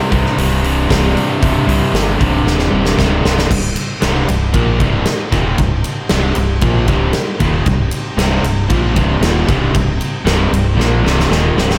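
A big arena sound soaked in a lush hall reverb frames this brooding, swaggering classic rock cut from a longer piece, moving at 115 BPM in a straight 4/4 on C minor. Up front, a big rock drum kit hits with a punchy kick and a medium-tuned snare in a natural, roomy acoustic tone, with crash, ride and hi-hat, and rolls through fills at 2.5 s and 10.8 s. A deep, dark, round fingered electric bass anchors the low end. Three overdriven, picked guitar riffs sit further back: a double-tracked cranked stack with slapback echo, a semi-hollow guitar with spring reverb, and a second semi-hollow guitar. Very quiet beneath them, a full, shouting tonewheel organ holds sustained chords through a rotary speaker, lightly overdriven, as the music moves into a new section at 3.5 s.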